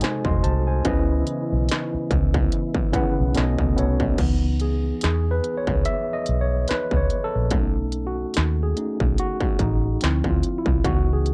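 A worn, slightly out-of-tune tine electric piano, lightly overdriven through its built-in speakers, carries this soulful, introspective neo-soul R&B excerpt at 72 BPM in C# minor, shifting from accompaniment to a solo from 4.2 s over the C#m9, B9 and Dm9 harmony. Underneath, an up-front electronic drum kit with a distorted kick, clanging snare and smooth, tape-tinged hats sets a swung 4/4 groove, while a dark, round, foam-muted fingered electric bass joins at 0.3 s with a punchy, amped tone. A soft, flute-like tonewheel organ holds sustained chords in the background through a slow rotary speaker and chorus vibrato, dropping out as the solo begins and returning at 10.8 s, all in a dry, close 1970s-style studio sound.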